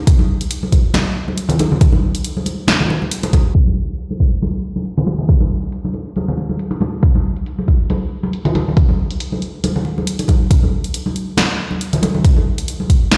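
Brooding and heavy, this half-time dubstep excerpt at 138 BPM with a light 16th-note swing pairs a deep, layered electronic kick up front with a deep house kit of hi-hat and punchy snare, while ringing, medium-tuned congas played with soft hands carry a dub echo, all set in a stone-room reverb that sounds like a big sound system in a bare room, dulled by a low-pass filter, with a filter sweep from 3.6 to 10.5 seconds before a build-up closes out the final seconds.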